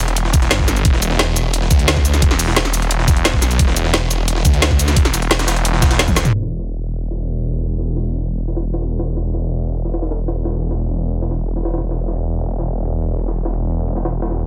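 A snarling, detuned sawtooth bass growls up front through distortion and tube saturation in this dark, mechanical technical drum and bass excerpt at 175 BPM in E minor, backed by an overdriven kit with a woody snare, bright hats, cabasa, toms and crash cymbal, a gritty, pitched-up jungle-style sampler kit with a high-tuned snare tucked in the background, and a knocking electronic kick that stops at 6.1 seconds with a drum fill, before a filter sweep takes over the dense, dry, heavily limited mix from 6.3 seconds.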